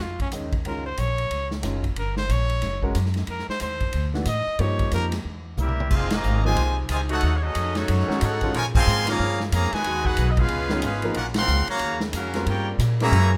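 Big band swing in F minor at 183 BPM, brassy and dramatic, this short cut opens with a clear, close-miked solo trumpet over woody pizzicato upright bass, a punchy big-room drum kit and a deep-bassed grand piano, until a drum fill at 5.6 seconds brings in a brilliant trumpet section and a vintage-toned trombone section, joined at 5.9 seconds by a very quiet, mellow saxophone section holding sustained chords, with band accents hitting at 6.1, 8.7 and 11.3 seconds under light reverb.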